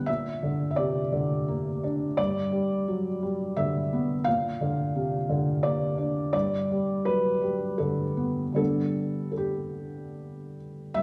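In a gently rubato triple metre, this peaceful, hopeful neoclassical minimalist fragment, cut from a longer piece, features a solo felt-muted upright piano, soft, mellow and intimate with short sustain and placed up front, moving between Bb and G chords across the G2 to F5 range inside a wet recital hall reverb.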